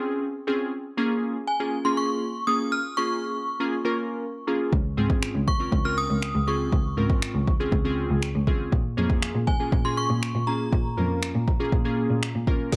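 Dance-pop at 120 BPM in Bb minor, this driving, energetic cut from a longer piece moves in a straight 4/4 over a Dbmaj7 and Bbm7 progression. Glassy digital keys open the clip with decaying, sine-like chords treated with chorus, sidechain pumping and a low-pass filter sweep, and at 1.5 seconds an inharmonic FM synth chime rings out a high melody through ensemble chorus and digital delay. At 4.7 seconds a deep house drum kit arrives up front with a punchy kick, a woody snare, finger snaps and crash cymbal, alongside a veiled, muted cello playing the bass line bowed with light vibrato and its own sidechain pumping. In the final instant, from 12.7 seconds, huge detuned supersaw chords and a barely audible, tine-like thumb-piano synth pluck flicker in at a very low level. The production is dark and warm, set in light reverb.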